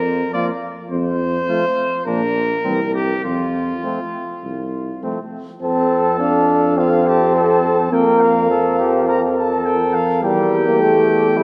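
A trumpet melody and an up-front tuba bass open this stately, triumphant brass quintet passage in F major at 104 BPM, cut from a longer classical piece, and the flugelhorn, French horn and trombone join at 0.3 s. The trumpet sounds distant and roomy as it carries the tune, while the tuba's clear, vintage tone, touched with light vibrato, anchors the low end. The flugelhorn adds a second line with a smooth top, the clear French horn sits in the background, and the trombone, the most prominent of the accompanying voices, brings a warm tone with vibrato. In straight 4/4 and tuned to A4 = 435 Hz, the harmony moves through F, Bb and C7 before a new section arrives at 5.6 s, bringing Gm7 over F and a rootless C over E. A wet concert hall reverb gives the ensemble a spacious, resonant setting.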